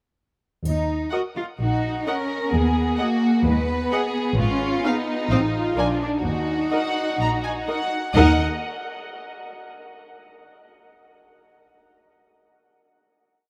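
A straight 4/4 pulse at 128 BPM drives this short, whole cinematic film cue in Eb minor, whimsical and mischievous with a magical, playful air. A dark double bass section enters first at 0.6 s, bowed softly over the fingerboard with a pure, floating tone, mixing pizzicato with sustained low notes. A warm cello section joins at 0.7 s and carries the melody up front with vibrato and a soft attack, while a triangle adds a few background strokes until 1.6 s. The violins bring a rich, intimate sound, one section playing after-beat and sustained chords high above and another placed up front with a counter-melody. A viola section sits in the background with after-beat chords and a smooth top. The harmony moves from Ebm through Abm7/Eb, Fdim/Ab, F7/A and Bb back to Ebm, and everything rings out in a vast, echoing cathedral reverb before settling on a final Eb5 chord at 8.2 s.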